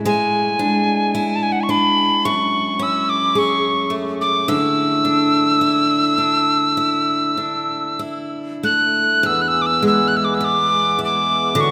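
A close-miked tin whistle, airy with a crisp chiff and vibrato, carries the melody up front in this wistful, nostalgic Celtic slow air, cut from a longer piece and played in a free, rubato 4/4 over a bright, picked steel-string acoustic guitar with audible finger squeak, while a reedy, breathing pedal harmonium slips in with mellow sustained chords at 9.2 s, the whole performance set in a long, wet cathedral reverb.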